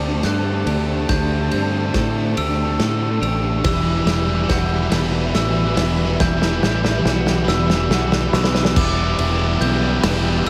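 A growly, up-front fingered electric bass anchors this cinematic, melancholic post-rock excerpt in E minor, moving at a slow 47 BPM in a straight 6/8 through a build-up with a drum fill over the first 8.8 seconds, as a loose indie drum kit with a punchy kick and dark cymbals enters at 0.2 seconds. A bright, compressed distorted guitar riff sits alongside a sparkling, bell-like glockenspiel and a twangy twelve-string electric guitar, both playing arpeggios with tape echo and plate reverb; the twelve-string drops out at 8.8 seconds as the harmony settles on Em7. Lower in the mix, a lush, bowed string section sustains expressive chords with vibrato and portamento, and a sludgy overdriven guitar riff joins at 3.7 seconds.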